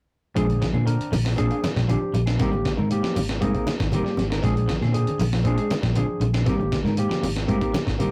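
Funky and driving, this short cut from a longer afrobeat piece moves in a straight four-beat groove over a two-chord vamp that alternates between Bb9 and Abmaj9. A barky tine electric piano carries the accompaniment, lightly overdriven through a combo amp, while a mellow, dark, cleanly fingered electric guitar adds stabs. A second electric guitar, twangy and at the edge of break-up, picks arpeggios further back in the mix. Underneath, a round, punchy fingered bass sits loudest, joined by a dusty sampler-style kit with a thumpy kick, fat snare and hi-hat, compressed and gritty as if re-recorded in a small room. Low-tuned, damped congas played with soft hands enter at 0.5 seconds in the background, and a grainy shekere sits very quietly up close. The whole take has the rough feel of a rehearsal-room recording, with light reverb and warm saturation.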